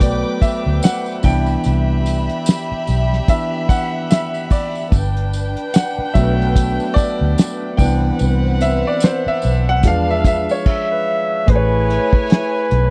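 A warm grand piano with deep bass and long sustain carries a solo through this lush, smooth 1970s-style soul excerpt at a slow 73 BPM with swung sixteenths, moving through Gmaj7, Cmaj7 and E7b9 before landing on Amaj9. Beneath it sit a round, foam-muted fingered electric bass and a cloth-damped, thuddy drum kit with a fat snare and dark cymbals, while a shadowy violin section with light vibrato adds a soft second line and a jingly tambourine sits in the background until 10.7 seconds. As the piano pauses briefly at that point, a breathy, whispered flugelhorn takes the melody up front, all captured in a dry, close studio sound.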